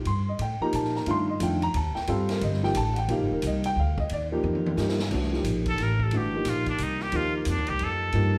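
A straight-muted trumpet, nasal and bright with light vibrato and a soft attack, steps forward at 5.7 seconds to take the solo in this hypnotic, spiritual modal jazz excerpt in a swinging 3/4. Beneath it, a dark, mellow upright piano with long sustain moves between Cm11 and Eb, while a woody pizzicato upright bass holds the low end close to the listener. A big-band drum kit with a punchy kick and medium-tuned snare swings lower in the mix and plays a fill at 4.4 seconds, and the whole room rings with a large studio reverb, heard from further back.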